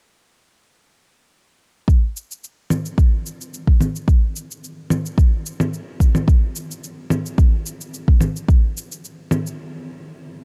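Built on a 4/4 pulse at 109 BPM with a light 53% swing on the sixteenths, this short downtempo cut from a longer piece has a hypnotic, earthy feel. A deep, tape-warm electronic kick drum sits up front from 1.9 seconds until 8.6 seconds. Shaker and congas, also produced with a tape-warm character and placed close, join at the same moment and carry on a little longer, to 9.6 seconds. The whole recording carries a dark, warm production inside a digital ambience. A brief stop follows, closing the passage at 10.4 seconds.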